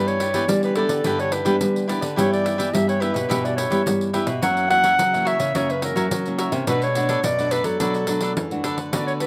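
Lively and festive, this short samba-and-choro clip puts a mellow, soft-attack clarinet up front with the melody over a crisp, picked cavaquinho touched with slapback echo, a full-bodied fingerpicked nylon-string guitar on accompaniment, a second classical-style nylon-string guitar carrying the bass line, and a jingly, hard-handed pandeiro, all heard in a dry outdoor recording with little reverb.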